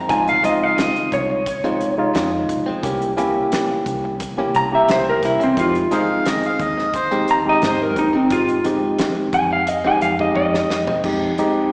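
Heard as a live gig through the venue's PA, with a small-speaker sound and lush hall reverb, this brief, brooding and mournful straight-eighth soul blues cut sets a lo-fi, slightly broken-up electric guitar melody with slapback echo up front over bright, clean direct-recorded guitar stabs in the background, a worn, slightly out-of-tune tine electric piano with light overdrive, a dark, round, foam-muted fingered bass, and a soul drum kit with a fat snare and dark cymbals, while a gritty overdriven harmonica with scooped notes and tongue slaps cuts in from 5.9 to 7.3 seconds before a drum fill at 10.4 seconds.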